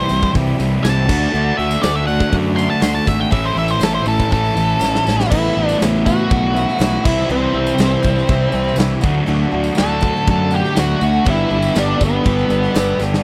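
Opening on a dark, up-front octave-fuzz lead guitar solo over a dry, close 1970s-style studio sound, this sunny, confident classic rock excerpt at 121 BPM in straight 4/4 stacks crunchy and sludgy overdriven guitar riffs, a boxy, bright picked swing-style acoustic guitar, a growly fuzz fingered bass, a jingly tambourine and a huge, punchy arena drum kit whose fill at 4.8 seconds leads from the solo into a section moving through Asus2, C, D and Gadd9.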